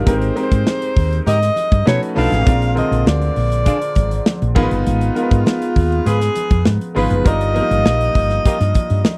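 This dry, close-miked recording has a polished 1980s jazz-funk pop sheen and an urban, breezy mood at 100 BPM in a straight 4/4. Up front, a modern acoustic drum kit with a tight kick, medium-tuned snare, hi-hat and crash cymbal drives the groove. A dark, round fretless bass with a woody, punchy tone and lush chorus sits just as close, while very quiet congas ring softly underneath from 0.4 seconds. A bright grand piano with audible action noise, long sustain and a subtle chorus plays the accompaniment, moving through rich chords such as Abmaj9, B9, Bb9 and Abm6. The alto saxophone carries the melody with a warm, pop-style vibrato and a slapback echo, joined at 1.3 seconds by a mellow, tight horn section playing a smooth second line with light vibrato.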